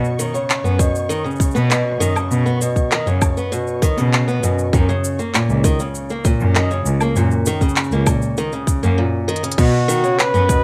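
Lightly reverberant and softly gritty, this delicate, warm folktronica passage at 99 BPM in B major, cut from a longer piece, sets a boxy, ladder-braced acoustic guitar picking arpeggios through 12-bit sampler grit, a low-pass filter and delay over a rich, bowed cello bass with vibrato and tube saturation, a tight, tape-toned electronic kick, and an organic electronic kit of cabasa, crash, handclaps, smooth hi-hat and woodblock, all alongside a very quiet, flickering grainy texture, moving from Badd9 to F#6 before a drum fill at 9.3 s leads to a punchy, smooth-topped flugelhorn melody entering at 9.6 s.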